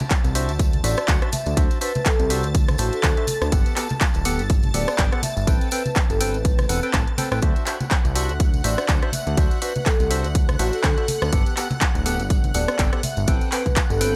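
Uplifting, joyful piano house at 123 BPM in D mixolydian, where a punchy overdriven kick and overdriven house kit of handclaps, hi-hat and rim click drive alongside background tambourine and congas, a fat, detuned sawtooth bass pumps under the sidechain, a hollow, ring-modulated organ stab riff trails dub echo, a silky string pad with ensemble chorus and phaser sits behind, and a mellow soft-mallet vibraphone melody rings from 0.8 s over D9, Gmaj9 and Am9 chords in this cut from a longer piece.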